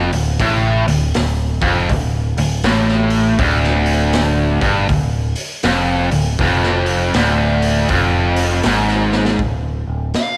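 A swung eighth-note groove at a slow 80 BPM in 4/4 drives this brooding, gritty blues rock and southern rock piece, cut from a longer track and sitting on a single D minor chord. An overdriven, double-tracked electric guitar carries a low, bright riff up front, while a growling picked bass, direct and amped with its own overdrive, digs in beneath it. A raw garage drum kit of kick, snare and hi-hat sounds saturated and rolled-off on top, with a punchy kick, a medium-tuned snare and a pumping small-room character, and it plays a fill at 9.0 seconds. At 10.2 seconds a smooth, dark lead guitar arrives on a single high F note. Light reverb and a small room ambience keep the power-trio sound close and raw.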